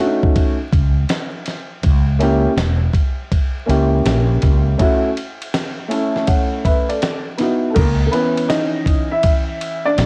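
A dark, woody upright piano with long sustain opens this mellow, smoky swung jazz-hop excerpt through a cassette-tape haze, quickly joined by a gritty, compressed sampler-style soul kit with a thumpy kick re-recorded in a large room and a round, up-front fretless bass with subtle chorus, all over a bed of vinyl crackle, before a break at 4.8 seconds gives way to a piano solo from 7.8 seconds.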